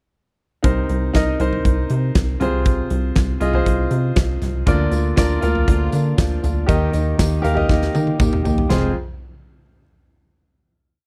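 A dry, close studio sound in a 1970s vein frames this short, earnest and bittersweet piece of piano-driven pop in straight 4/4. From 0.6 s a clear, vintage concert grand plays syncopated chords in close voicing up front, alongside a plucky analog bass of sawtooth, square and triangle tones with ring modulation, driving eighth notes with a fast-attack filter pluck. A huge acoustic arena kit with a hall character, bright cymbals, a fat snare and a punchy kick stomps out a four-on-the-floor pop beat, then rolls into a drum fill near the end of the pre-chorus. At 4.7 s a fingerpicked, full-bodied jumbo steel-string acoustic guitar joins with a riff of eighth-note strumming in open chord shapes, while a jingly tambourine sits in the background on the backbeat. The harmony moves from Cm7 through Fm/C, Bb/D and Eb before landing on a final Fm chord at 8.7 s.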